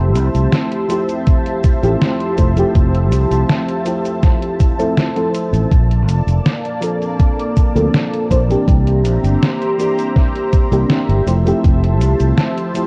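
A soft, round FM electric piano with analog chorus and tape echo opens this dreamy, nostalgic vaporwave fragment at 81 BPM in F major, alongside a thick, detuned sawtooth pad with chorus and phaser and a growly fingered electric bass, moving through Fmaj7, Bbmaj7 and C7 before returning home. A detuned 8-bit drum machine with cabasa, hi-hat and a medium-tuned snare comes in at 0.2 seconds, and a thumpy sampler-style kick joins at 1.3 seconds, both carrying gritty 12-bit texture and studio reverb. The recording sounds like worn cassette tape, with warbly pitch drift and a dulled top end.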